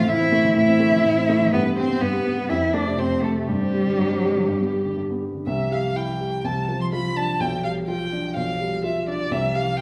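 A wet recital-hall reverb surrounds this cheerful, spirited excerpt of a quick classical-period piano trio at 124 BPM in 4/4, where a distant violin carries the melody with a rich, smooth, even bowed tone and vibrato, a distant cello adds an expressive second line with vibrato and portamento, and an up-front, natural-sounding baby grand piano gives warm accompaniment as the harmony moves from Am to C at 5.5 s, all tuned to A4 = 441 Hz.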